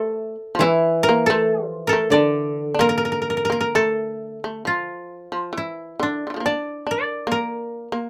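A koto carries a woody, dry melody in the upper range from the opening, played with fingerpicks and set up front beside a bright, buzzing shamisen. The fretless shamisen, plectrum-plucked and powerful, carries a percussive second line below. A second koto, also played with fingerpicks, adds a low accompaniment from 0.6 to 4.9 seconds in this meditative, austere piece of Japanese chamber music, which moves in a free rubato 2/4, sits in a moderate booth ambience and is cut from a longer work.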